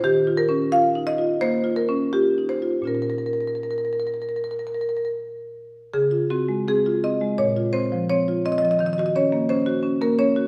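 A solo marimba played with medium mallets carries this short portion of a contemporary classical piece, its rosewood bars giving a woody, warm tone that sits up front. The mood is reflective and hypnotic, with the rubato phrasing letting the pulse breathe freely within a four-beat metre. The writing moves through open, suspended harmonies before settling onto a minor chord, then brightens at 5.9 s into a richer major-seventh colour and drifts back toward suspended and minor-seventh shades. The part ranges from Bb2 up to F5, giving the lone instrument both a resonant low end and clear upper notes. A stone room reverb with a 1.3-second tail surrounds the marimba, and the listening position feels set further back in the space. The passage runs 10.5 s, lifted from a longer work.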